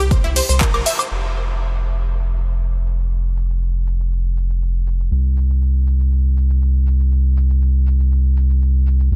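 A round, deep analog bass sits up front with sidechain pumping in this dreamy, expansive progressive house excerpt. It opens on a drop over a C7 chord, where a lush, detuned unison pluck plays arpeggios with tape echo until 1.0 s and an overdriven electronic kick hits briefly under a band accent at 0.6 s, while an up-front house drum kit of bright hi-hats, handclaps, shaker, woodblock, ride and crash, with overdrive and filtered percussion, carries on beneath digital ambience and a dense, heavily limited master.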